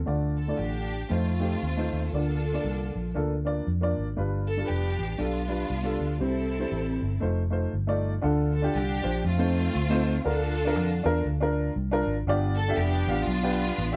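A swung 4/4 groove drives this jubilant, soulful uptempo gospel passage, where a dark, round, foam-muted electric bass and a woody upright piano sit up front in a live-room sound with moderate reverb, while a lush bowed string section carries the melody with vibrato over changes that cycle through Dm, F7, Bb and G7.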